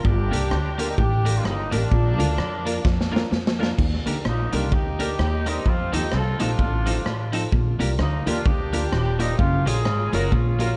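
Ska at 128 BPM in Bb major, upbeat and cheerful, with a swung eighth-note feel in 4/4, heard as a short section cut from a longer piece. A clear, punchy horn section carries the melody with light vibrato and a tight, vintage pop-style sound, dressed in tape echo and plate reverb. Underneath, a woody pizzicato upright bass sits prominently, while a raw garage drum kit with a punchy kick, medium-tuned snare, rim clicks, hi-hat and crash sounds gritty and saturated in a bright stone room, with tape echo of its own and a drum fill from 2.9 to 3.8 seconds leading into the next section. Two clean, twangy electric guitars play, one holding a riff from the start and the other, very quiet, adding accompaniment from 0.3 seconds, while a dark, boxy upright piano adds mellow stabs in the background. The harmony moves from Gm to Bb before shifting at 3.8 seconds through Ebmaj7, F7 and Bb6 to a closing Gbmaj7, all within a lightly reverberant mix whose top end is gently rolled off.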